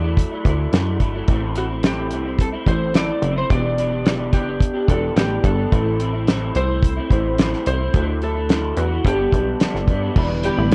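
A damped 70s drum kit sets a straight 4/4 pulse at 108 BPM from 0.2 seconds, its fat snare and tight kick sitting dry and up front in this wistful, mellow slice of indie and bedroom pop in A dorian. A plucky analog bass, punchy and funky with a fast, decaying filter pluck, holds down the low end alongside it. An electric guitar through a small old amp supplies bright, twangy, slightly broken-up picked accompaniment, thickened with ensemble chorus, warbly pitch drift and plate reverb. Over this, a dark, compressed electric slide guitar carries the melody, bathed in analog chorus, analog delay and plate reverb. The chords move from Dadd9 through Am and Em7 to G before settling on Em7, and a warbly tape-like pad with a slow attack slips in at 10.3 seconds in the background just before the cut. The whole recording has the worn, warbling character of old cassette tape, set in a light reverb.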